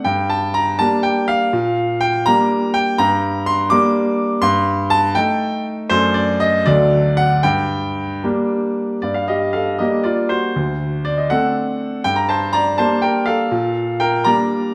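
A bright, up-front grand piano with brilliant, open tone and long sustain plays alone across this restless, serious classical-period sonatina fragment in G minor, moving in a rubato 6/8 at 81 BPM through a range from D2 to D6, stating its opening section and then returning to it at 9.0 s over harmonies that turn from G minor through A half-diminished and D major back home, all carried by a wet recital-hall reverb.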